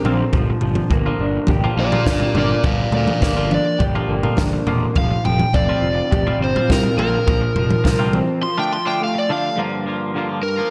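A big arena sound fills this short indie rock excerpt, with a moderate, lush hall reverb giving the whole band a spacious, moody air. At 104 BPM in a straight 4/4 and in G minor, a crunchy, overdriven lead guitar sits up front and carries the melody as a bright solo through the first 9.6 seconds. Beneath it, a dark, slightly broken-up guitar through a small old amp plays a lo-fi riff coated in lush chorus and slapback echo, while a twangy, clean electric guitar picks a lower riff with subtle chorus and the same slapback. A fuzz-drenched picked bass adds a round, overdriven bottom, and a compact cocktail drum kit plays dry and close, with a punchy kick, high-tuned snare and toms. The chords move from Gm7 through Fsus2 and Bbadd9 to Dm, where a break arrives at 8.4 seconds, the bass and drums having dropped out just before it. The guitars then settle back on Gm7 for a brief closing passage.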